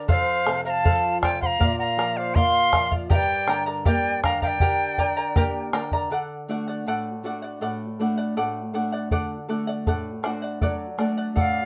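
Wistful and earthy, this Andean folk excerpt in 2/4 sets an airy, up-front cane quena with crisp chiff and unsteady vibrato over a distant wooden large quena tonguing a second line, while a mellow, shimmering charango and a dark, boxy nylon-string guitar fingerpick the accompaniment. A round bombo sits forward in the moderate studio reverb, while the guitar adds fills. The quenas fall silent at 5.7 seconds and the bombo at 6.1 seconds, so strings carry the second section until the drum returns at 9.1 seconds.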